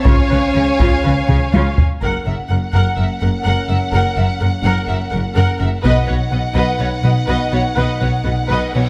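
Triumphant and adventurous, this short cinematic orchestral excerpt in F# major at 125 BPM pairs a lush, expressive violin melody with a second, more distant violin line, close-focused violas, a mellow French horn section holding sustained chords in the background, and clear cellos and smooth double basses anchoring the bass, while close, heavy-stick taiko drums drive forward with a fill from 1.3 to 2.0 seconds before falling away at 6.8 seconds, and a huge, bright but very quiet cymbal swell then enters at 8.4 seconds, all set in a moderate scoring-stage reverb over a C#, F# and B progression.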